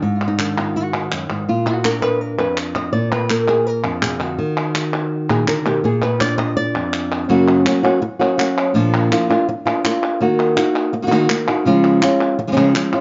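A fingerpicked flamenco guitar sits up front in this fiery, passionate flamenco excerpt, its acoustic tone warm and bathed in plate reverb as it carries the melody from F2 up to Eb5. The guitar opens with a nylon-string solo passage through the first 7.3 seconds, shifting into a new section from that point until the cut at 13.0 seconds. Crisp palmas hand claps join at 0.2 seconds, sitting lower in the mix with the feel of a live room. The harmony moves through Ab5, Bb, Ebm, Gb and Db, and the instrument is tuned to A4 = 435 Hz. The recording has a moderate studio ambience, with the top end rolled off above 7.5 kHz, giving the straight 4/4 performance a rounded, intimate character.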